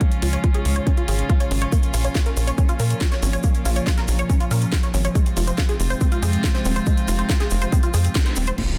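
Uplifting trance with a soaring, bittersweet mood, heard in a short excerpt cut from a longer piece and moving through Db, Bbm and Fm. A rich chamber string section with a reedy, gut-string period tone holds sustained chords, roughened by vintage 12-bit sampler grit, a low-pass filter and sidechain pumping. Beside it, a tight sequenced synth plays detuned, mellow arpeggios with chorus and delay under a filter sweep, while a punchy sawtooth sequencer bass enters at 0.2 seconds, up front and pumping. A layered electronic kick leads the drums, joined by a house kit with a cracking snare, metallic hats and crash cymbal, and a grainy, close tube shaker sits in the background from 1.7 seconds. The band hits an accent at 8.2 seconds before an electronic impact lands at 8.6 seconds, all within light digital ambience and a dense, heavily limited modern master.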